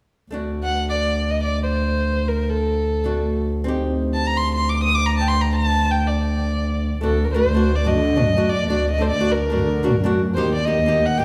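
A wet recital-hall reverb, with a decay of about 1.8 seconds, surrounds this short cut from a longer klezmer piece, giving it the resonance of a church or concert hall. In free time and D phrygian dominant, the music feels soulful yet festive. From 0.3 seconds a fingerpicked flamenco guitar supplies a warm acoustic accompaniment alongside a bowed double bass played sul tasto, with light vibrato, a soft attack and an airy tone. At 0.6 seconds a single violin takes the melody, dark and intimate, with a smooth top and gentle vibrato, sitting close and up front alongside the bass. The harmony rests on D, moves to Cmadd9 over D, returns to D as a new section begins at 7.0 seconds, and ends on Eb.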